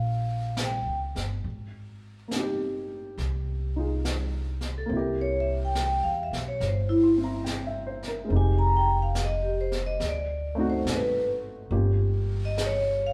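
A ringing, metallic vibraphone struck with medium hard mallets, its motor off, carries an airy, up-front solo melody through this wistful, melancholic jazz ballad excerpt at 70 BPM in 4/4 with swung eighth notes. A woody, polished upright piano with short sustain comps through rich harmonies moving from Eb9 to Abmaj9, C7, Fm9, D7b9 and Gm7b5, while a pizzicato upright bass with steel strings sits up front. A natural-sounding brush kit with a high-tuned snare and hi-hat enters at 0.6 s, and the whole band plays live in one room bathed in a wet, large studio reverb.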